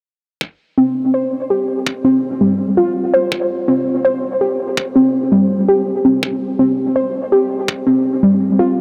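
Heavy and tense, this half-time drum and bass fragment sets a dusty, warbling, detuned pluck playing dark arpeggios through chorus and diffuse ambient delay from 0.8 seconds, above a knocking, tape-warm electronic kick that enters at 0.4 seconds, high-pass filtered and up front, all within a dreamy mix soaked in huge ambient reverb.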